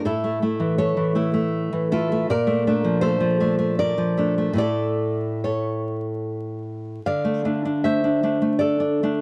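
A dry, close recording with a 1970s studio feel places the listener near the player in a small room, with vinyl crackle under the sound. A bright nylon-string guitar plays alone and up front, fingerpicked in a romantic classical style in a rubato three-four lilt, moving through chords from A to B-flat major seventh and back to A before settling on D minor around 7.1 seconds. The mood is melancholic and wistful, and this brief excerpt is cut from a longer piece.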